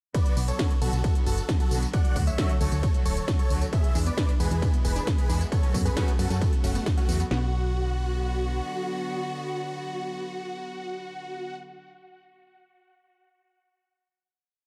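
A heavy four-on-the-floor kick and cracking snare drive this short, complete uplifting trance piece, with smooth programmed hats, ride, tambourine and a backbeat layered on top, their tape-softened sound re-recorded in a small room. A punchy, round FM bass sits up front on the off-beats, pumping against the kick. A huge, euphoric supersaw lead carries a repeating riff in thirds and sixths, its detuned sawtooth sound bright, compressed and trailed by dub echo, while a gut-string studio string section with light vibrato and a reedy, period-style tone holds sustained chords underneath through Bm, D, E and F#m. At 3.7 seconds a lush unison pluck joins in the background with a three-step loop that drifts against the bar, and the drop gives way at 7.3 seconds to a final B minor chord, with the bass lasting until 8.6 seconds. The mix is dark and dry, and the soaring, driving mood rests on the sidechain pumping of the lead, strings, bass and pluck.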